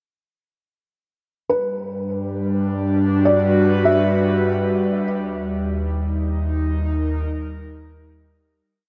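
Bathed in a huge, wet reverb and the warbling pitch drift of worn cassette tape, this brief, peaceful, weightless ambient piece sets a felt-muted upright piano's boxy, intimate motif, heard from 1.5 to 5.0 s through a diffuse delay, over a breathy, detuned pad with chorus shifting slowly from Gmaj7 to Eb and a round sine sub bass that fades in, before the piece fades out from 5.1 s.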